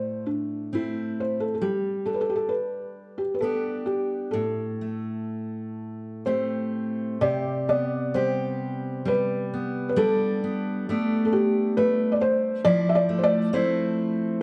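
A felt-muted upright piano carries the melody up front, its thick felt giving a soft, dark, intimate tone, with the mechanical noise of its action audible. This is a mournful, haunting Celtic slow air in 3/4, moving freely in rubato at roughly 60-69 BPM. A fingerpicked steel-string dreadnought guitar plays the accompaniment alongside it throughout, its full-bodied acoustic sound sitting just as close as the piano. The harmony opens in a minor mood on Am, G and Am7, then turns at 7.2 s toward C5, Gadd9 and Fmaj7, lending the second half a more open, suspended color. A moderate scoring-stage reverb surrounds the pair, adding space while keeping the duet close and personal in this excerpt, which is cut from a longer piece.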